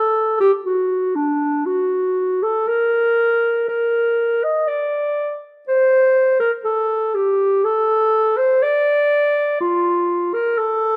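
Close, detailed microphones capture a dark, roomy clarinet set up front in a moderate recital hall reverb, in this brief passage cut from a longer piece. It is a grave, introspective baroque-style fantasia for unaccompanied clarinet, moving freely in rubato around 61 BPM in 3/4. The solo line stays between D4 and Eb5 across its 11 seconds.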